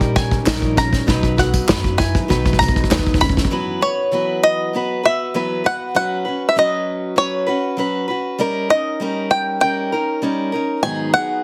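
Heavily compressed, radio-like sound in a small, lightly reverberant room frames this uplifting, nostalgic indie folk excerpt at 98 BPM, where a twangy, fingerpicked bluegrass banjo carries the melody up front over a boxy parlour steel-string acoustic guitar, while a worn dark grand piano, a mellow upright piano with digital delay, a growly pizzicato upright bass, a punchy acoustic drum kit playing a fill, a jingly tambourine and crisp group handclaps drive a build-up that falls away around 3.5 seconds, leaving banjo and guitar alone over chords such as Esus2 and F#sus4 until 11.4 seconds.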